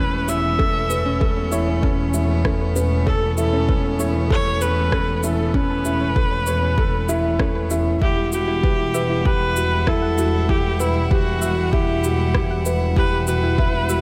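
Melancholic and intimate, this piano and strings electronica excerpt sets a clear, nasal bowed viola melody over a felt-muted upright piano riff with audible action noise and digital delay, bright string quartet chords and a rich symphonic double bass section that both pump with sidechain, a soft round pluck arpeggio, and an electronic shaker and rim click joined by a deep electronic kick drum at 0.6 seconds, all under light studio reverb.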